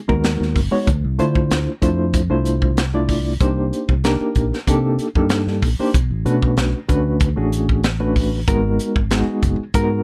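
A crisp, gritty fusion drum kit with a high-tuned snare and punchy kick sits up front in this intense, slick electric jazz fusion excerpt at 95 BPM, alongside a reedy, worn, slightly out-of-tune electric piano with fast tremolo through its built-in speakers and a dark, round fingered bass, all moving through minor ninth chords in a dry, close sound.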